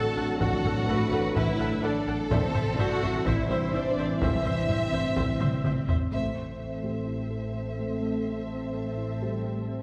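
Brooding and relentless, this cinematic cue blends orchestra and electronics at 126 BPM in A dorian. A lush, low-pass-filtered violin melody sits in the background over an expressive second violin line, close, rich cellos, distant double basses, filtered violas, mellow French horns and a very quiet, close-miked trombone section holding sustained chords. A dark, tine-like FM synth pluck spins chorused arpeggios and a felt-muted upright piano adds intimate texture with audible action noise, while a band-limited taiko ensemble struck with hard sticks drives a drum fill at 5.4 seconds into a band accent at 6.1 seconds, all heard from further back in a reverberant scoring stage, with the trombones dropping out near 5.8 seconds.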